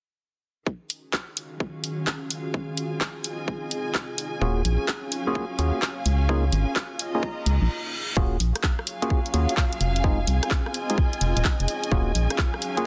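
Bouncy and moody, this two-step UK garage excerpt at 128 BPM in Eb dorian swings its 16ths over a tight, tape-warm electronic kick and up-front garage kit of handclaps, hi-hat and rim click, while veiled, muted strings fade in from 0.7 seconds alongside an ethereal, detuned pad pumping with sidechain, until a hollow FM bass and chorused, mellow organ stabs with dub echo arrive at 4.4 seconds and a reverse cymbal at 7.4 seconds leads into the second section over chords moving between Ebm11, Fm7 and Db69, all in a dense, heavily limited mix with light digital ambience.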